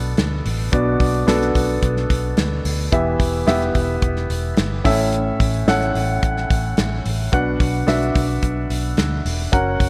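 A dark, woody upright piano and a round, foam-muted fingered electric bass open this bittersweet, driving piano pop excerpt, with a damped 70s drum kit of hi-hat, tight kick and medium-tuned snare joining at 0.2 seconds. The mellow, long-sustaining piano sits up front over a chord path from Bm through Em and A back to Bm, while the punchy, amped bass anchors the low end. The dry acoustic drums carry a rolled-off top and gated reverb, all framed by light studio reverb in a bright 1980s-style digital production.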